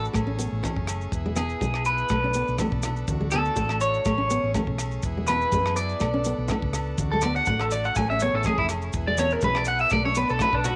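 An up-front, twangy electric guitar at the edge of break-up carries this sunny, carefree highlife excerpt, its picked arpeggios running through phaser, analog delay and plate reverb as a clean solo line from start to finish. Beneath it, a fingerpicked steel-string acoustic guitar with fresh strings adds a full-bodied accompaniment, while a dark, round hollow-body short-scale bass anchors the low end. A tight funk drum kit, dry and polished with a snug kick, works hi-hat, kick and rim click in a lightly swung 4/4, joined by low-tuned, compressed congas played with soft hands, grainy close maracas and ringing agogo bells set in the background. A buzzy vintage combo organ holds sustained chords far back in the mix as the harmony cycles through Amaj7, E, Bm7 and D. The home cassette recording lends a booth-like ambience and a faint mains hum, and the passage is cut from a longer piece.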